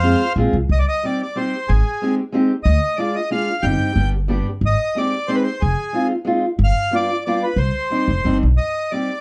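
A reedy, airy accordion carries the melody up front, singing in a full, rich voice through this bittersweet, nostalgic musette waltz in three. The lilting triple-time feel is loose and rubato, giving the tune a wistful sway. A fingerpicked steel-string acoustic guitar accompanies in a parlour style, its tone dark and boxy. Beneath them, a pizzicato upright bass adds a woody, thumpy foundation, dropping out at 8.6 seconds while the guitar continues to 9.1 and the accordion to 9.2. The harmony moves through minor chords, a major seventh, a diminished chord and a dominant seventh before settling on C minor. Light reverb, tape saturation and a dark, warm production give this fragment of a longer piece an intimate, old-world glow.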